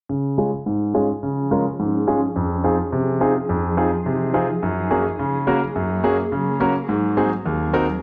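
A lush hall reverb with a moderate 2.4-second tail surrounds this short sunny, summery dancehall passage, cut from a longer piece, and a filter sweep runs through its full length. A concert grand piano sits up front, intimate and polished, with deep bass, long sustain and audible action noise. It carries the accompaniment in Db major at a straight 106 BPM in 4/4, moving through Db, Fm7, Gbadd9 and Ab7. A granular cloud pad enters at 1.4 seconds, lower in level and softened by a low-pass filter and its own reverb. Its detuned, triangle-based tone has a slow attack and long release, with sustained chords that drift in a cloudy, blurred, evolving haze behind the piano until the passage ends at 8.0 seconds.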